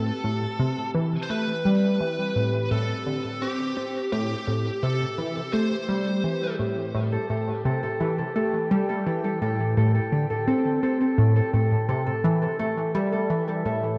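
Hypnotic and cosmic, this excerpt of ambient, sequencer-driven space music rides a tight, detuned sawtooth synth riff up front with chorus, phaser and tape echo over a single Am7 chord, while a mellow, pulsing gated texture sits in the background, a bluesy overdriven electric guitar melody sounds until 6.6 seconds, and a ringing concert harp takes up arpeggios from 7.1 seconds, all bathed in a wet spring reverb and heavy echo.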